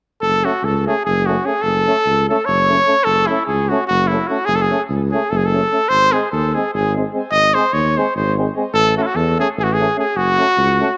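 A clear trumpet with light vibrato and a smooth top carries the melody up front, its classical-style line touched by tape echo, in this fiery, restless Balkan brass band passage cut from a longer piece. Set in 7/8 at 296 BPM in eighths with a straight feel, the music sits in F# dorian sharp4, tuned to A4 = 438 Hz, and moves from F#m through G# at 5.9 seconds and A at 8.7 seconds before returning to F#m. A mellow, punchy tuba holds the bass up front, though its tone is distant and roomy. Two euphoniums fill out the accompaniment in the background: one clear with a soft attack and a vintage, band-limited colour, the other warm, both with light vibrato. The trumpet and tuba enter at around 0.2 seconds, the euphoniums join at about 0.4 seconds, and all four play on until close to 11 seconds, while a wet spring reverb lends the whole band a lingering halo.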